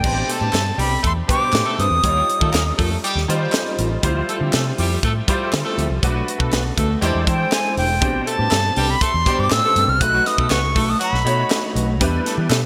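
Airy, close-miked silver concert flute carries the melody with an expressive vibrato and soft attack, appearing from 0.0 to 2.8 seconds and returning from 7.3 to 11.7 seconds in this short cut from a longer piece of polished 1980s jazz-funk pop. Underneath, a tight funk drum kit sits up front with a high-tuned snare, a tight kick, hi-hat and crash, dressed in gated reverb, while a round, foam-muted fingered electric bass anchors the low end. A brilliant grand piano with ensemble chorus plays the accompaniment, and a dark, clean electric guitar with subtle chorus works a riff in the background. A horn section with light vibrato adds a punchy second line through a delay, and very quiet, crisp group handclaps join from 0.5 seconds. At a straight 120 BPM in 4/4, the upbeat, glossy groove moves through rich chords like Am11, Eb9 and E7alt, framed by light reverb and a bright digital sheen.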